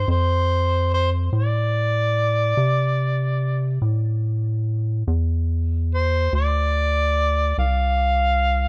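A slow, straight 12/8 sway carries this brooding, soulful blues fragment over a single Dm7 chord, where a mellow, overdriven harmonica with light vibrato and scooped notes sings a vintage, jazz-tinged solo above a rubbery, hollow, dark square-wave bass, both placed up front in a rough home-demo mix with light reverb and small-room ambience.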